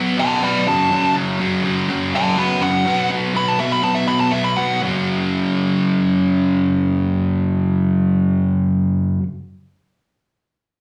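A smooth, shadowy lead guitar takes a solo from 0.2 to 4.8 seconds, picking a high melody between D5 and B5 through overdrive and slapback echo. Beneath it, an up-front, double-tracked electric guitar grinds out a picked, dark, overdriven riff in the low register, running from the start until 9.2 seconds with its own slapback echo. This heavy, driving rock passage, cut from a longer piece, moves at 123 BPM in a straight 4/4 in F# minor. The harmony shifts from Bm to F#m, then settles into B5 and, once the solo ends, F#5 power chords. It sounds like a live gig heard through the venue's PA, with moderate club reverb giving the guitars a sense of the room.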